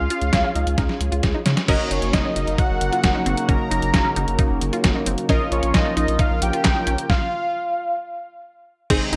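A fat, detuned sawtooth lead carries the melody up front from the first moment, with chorus, phaser and delay, over a punchy, funky polysynth comp and a deep, saturated sine sub bass, setting a nostalgic, wistful synth-pop mood. A thumpy, tape-tinged 8-bit drum machine with gated reverb and a bright unison pluck arpeggio in the background join almost at once, and the drums play a fill before a shimmering pulse-width pad enters at 1.7 seconds. A stop arrives at 7.1 seconds and the lead ends at 8.0 seconds, all within a bright 1980s-style digital production with a plate reverb.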